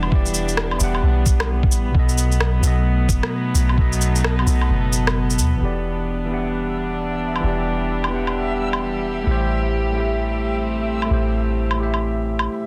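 Opening on a gritty, overdriven tine electric piano through a combo amp, filtered and treated with digital delay, over reedy, distant chamber strings and a deep, round 808-style bass, all three pumping to the sidechain, this rainy, ghostly future garage excerpt in E minor at 131 BPM swings with tape-warm electronic woodblock, shaker and rim click, while a muffled, thumpy pitched-down kick plays until 3.9 s and a bright, reversed, detuned swelling texture drifts in the background from 6.3 s before the music stops at 12.5 s.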